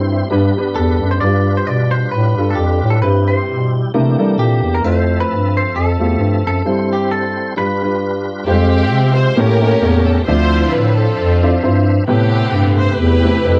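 A dark, classically voiced bass clarinet sits up front in this soulful, reverent gospel excerpt, carrying the bass line beneath a lightly swung groove in four. A woody, open upright piano plays accompaniment throughout, while a tonewheel organ holds full, clean sustained chords colored by chorus vibrato, key click and a fast rotary speaker. A bright, twangy electric guitar, picked and compressed with a scooped tone, takes the melody from 0.8 seconds until 8.2 seconds, with a break falling near the end of this opening passage. At 8.5 seconds a lush symphonic string section takes over the melody, bowed with vibrato and a focused, smooth top, as the harmony turns from G7 and Cmaj7/G toward Fmadd9, A7b9, Dm9 and Am9. The sound is dry and close, with the feel of a 1970s studio recording.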